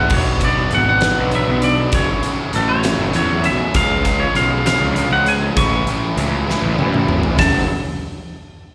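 Angsty and brooding, this short quiet-loud alternative rock passage moves at a slow 66 BPM in a straight 6/8, centred on F# minor with a slightly sharp tuning. A clean, twangy electric guitar carries the melody high above, touched with slapback echo, while a dark, sludgy overdriven guitar and a thick fuzz guitar play the riff in the background with their own slapback echo. Up front, a growly fuzz bass anchors the low end, and a very quiet steel-string acoustic guitar picks arpeggios with audible finger squeak until 3.7 seconds. A huge, polished arena drum kit with bright cymbals, a fat snare and a punchy kick drives the passage as the chords move from Bm through F#m, C# and A, heading through a drum fill from 6.5 seconds into a return to F#m at 7.4 seconds. The whole performance sounds like a live gig heard through the venue's PA, wrapped in small-room ambience and recital-hall reverb.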